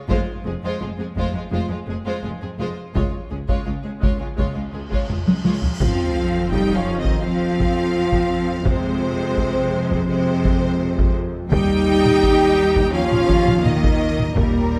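Punchy French horns hold clear, sustained chords over hard-stick taiko drums in this heroic, relentless cinematic orchestral cue in F minor at 84 BPM, with focused, vibrato-rich violins carrying the melody above a lush second violin line, smooth violas, close cellos and distant double basses, all bathed in a wet scoring-stage reverb as a huge, dark cymbal swell and sub drop arrive at 4.9 seconds, building to an impact at 5.8 seconds.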